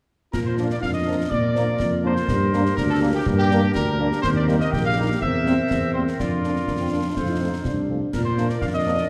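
An up-front trumpet section carries the melody with light vibrato and a smooth top in this rousing, proud military-style march for wind band in 2/4, while a clear, distant woodwind section and a mellow euphonium add second lines, a very quiet, tight French horn section and background trombones supply accompaniment and sustained chords, a soft-attacked, roomy tuba holds the bass, and a close, dry concert snare drum, concert bass drum and dark clash cymbals mark the beat, all within a moderate scoring-stage reverb and a dark, warm production.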